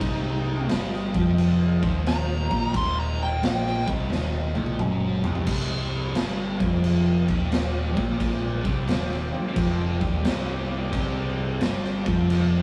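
Swinging eighths at 88 BPM in 4/4 drive this brooding, sludgy stoner and doom metal excerpt in C minor, anchored on a Cm chord, with a raw garage drum kit sitting up front, its punchy kick, medium-tuned snare, toms and crash sounding gritty and saturated with a rolled-off top, and a drum fill arriving at 4.1 seconds. Two thick fuzz guitars grind out the low riff, one warmer and the other dark and set in the background, over a bright, growly picked electric bass with overdrive, while an analog drone of sawtooth and pulse waves holds evolving sustained chords through chorus and phaser in the background. A compressed fuzz lead guitar carries the melody up front until 3.9 seconds, and the whole rough rehearsal-room recording rings in a stone room reverb.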